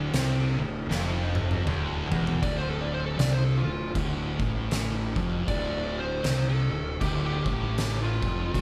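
A slow, swung 4/4 at 78 BPM drives this ominous, sludgy stretch of stoner and doom metal in D minor, cut from a longer piece. Two thick fuzz guitars, one dark and one warm, churn a Dm riff in the background over an overdriven fingered fuzz bass, while a bright, double-tracked high-gain guitar doubles the riff until 2.4 seconds. An oversized, low-tuned acoustic kit sits up front, saturated and gritty with a fat snare, punchy kick, dark cymbals and a pumping stone-room ambience; it rolls through a drum fill from 0.9 seconds before a compressed, warm fuzz lead guitar takes a solo at 2.4 seconds, all captured live in one room with a large studio reverb.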